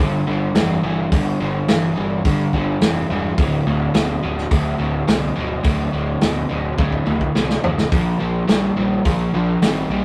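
A bright, crunchy overdriven electric guitar leads this brooding, heavy blues rock and southern rock excerpt, its double-tracked riff sitting up front in D minor at 106 BPM and moving through G5, D5 and Bb5 power chords. A growly fuzz bass sits low beneath it, and from 0.6 s a punchy vintage acoustic kit with a medium-tuned snare and a rolled-off top joins in, pushing a fill between 6.8 and 7.9 seconds. The rough rehearsal-room sound carries tube saturation and a moderate studio reverb.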